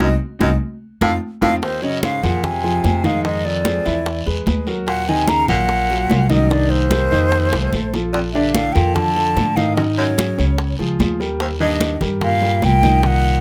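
A brisk, straight 147 BPM groove in 4/4 drives this sunny, danceable Afro-Cuban jazz excerpt, opening with a band accent and drum fill before the raspy guiro joins at 1.6 seconds, as a breathy, tongued concert flute with vibrato sings the melody over a distant, subtone baritone saxophone second line, open concert grand piano accompaniment, a woody, dark pizzicato upright bass up front, and tight high-tuned bongos and ringing congas in the background, all moving through chords from Cdim and F7 to Ebm11, Bbmaj7 and Dbadd9 with light reverb and close, detailed sound.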